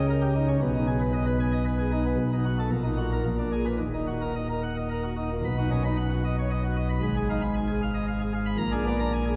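This classical organ toccata is a short, majestic and stormy passage in Eb minor at 114 BPM in 3/4 with a straight feel, cut from a longer piece. A single pipe organ plays solo throughout, drawn on a full plenum with mixtures, spanning Eb1 to B5. Its baroque voicing gives it a brilliant edge with a touch of chiff, and the organ sits up front even as the recording is heard from further back in a church, with a wet reverb lingering about 3.6 seconds. The harmony opens on Eb7 over Db and moves through Abm, B7 and a Bb7b9 before settling on Ebm at 3.8 seconds. A second passage begins at 5.4 seconds on B major, passing through a diminished chord and ending on Bb7.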